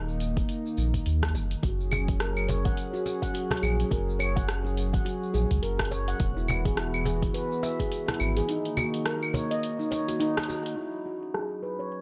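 A ringing, nitrided-steel handpan sits up front with soft, airy, meditative arpeggios through a low-pass filter and tape echo in this earthy, peaceful organic downtempo excerpt at 105 BPM with a swung 16th feel in F# mixolydian, carried by a smooth sawtooth pad with chorus and sidechain pumping, a round, deep sine sub bass that stops at 8.4 s, a tape-warmed deep house kit of claves, hi-hat, rim click and shaker under low-pass filtering, a layered electronic kick, and a woody, close cajon with faint snares and hard hands, set in a dry, gritty space before a band accent at 10.3 s and a filter sweep on the handpan from 10.8 s.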